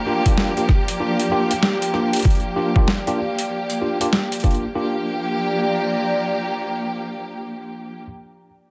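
A swung sixteenth-note groove drives this playful, funky glitch hop fragment, with a gritty, pitched-down sampler-style kit of hi-hat, rim click and medium-tuned snare riding over a thumpy, overdriven electronic kick, both up front and playing from 0.3 to 4.6 s. Underneath, a lush, bowed symphonic string section holds sustained chords on Gm7 with vibrato, while a worn, slightly out-of-tune tine electric piano punches out lightly overdriven stabs through a low-pass filter and tape echo, both breathing with sidechain pumping. A warbling, nostalgic lo-fi pad of detuned sawtooth and triangle tones sits higher and softer, washed in chorus, phaser and its own reverb as it also pumps, and a moderate plate reverb gives the whole a roomy sheen.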